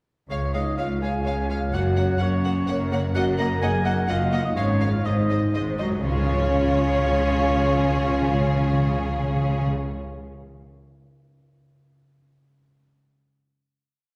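A dark chamber double bass section with portamento anchors this adventurous, soaring heroic film cue in Db major, moving at 126 BPM in 3/4, alongside a lush cello section and sustained French horn chords that carry the melody. A close, expressive chamber violin section leads the tune, while a solo oboe doubles it at the octave, a symphonic violin section adds a smooth second line, a mellow flute section enters at 0.8 seconds with a counter-melody, a viola section fills in behind, and a very quiet harp rings out broken-chord arpeggios. Dry, calf-headed timpani join at 5.1 seconds with a rolling fill into the final chord at 6.0 seconds, all set back in a reverberant concert hall.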